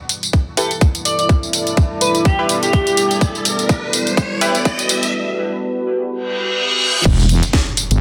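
The groove sits at 125 BPM in 4/4 with a 56% swing on the sixteenths, a bouncy, aggressive bass house build-up in E minor cut from a longer piece. A garage drum kit with a cracking snare, bright hats, tambourine and crash runs up front in a small room from the start, joined at 0.3 seconds by a tight, layered electronic kick, with a drum fill arriving at 3.2 seconds. Beneath them a moody analog pad holds sustained Em chords while a deep, evolving ambient pad adds texture, both with chorus and sidechain pumping, the ambient layer carrying its own reverb. Filter sweeps draw the analog pad and a nasal, band-passed sawtooth chord stab through the build-up. An airy, dreamy lead with vibrato and dub echo floats between G4 and D5 until 3.1 seconds, as electronic effects add a riser, a reverse cymbal and a final impact. At 7.1 seconds a heavy, saturated wobble bass lands between E1 and G1 with sidechain pumping, in a dense, heavily limited mix.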